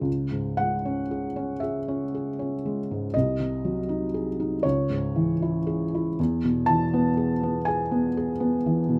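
A felt-muted upright piano sits up front, its soft, mellow, intimate tone carrying a yearning, melancholic romantic nocturne in C# minor at 40 BPM in a rubato 6/8. Played solo across the full 9.0 seconds of this short section cut from a longer piece, it ranges from B#1 to A5, moving from C#m through G#7/B# and back to C#m before settling on E at 6.2 seconds. Light reverb keeps the close, hushed sound natural.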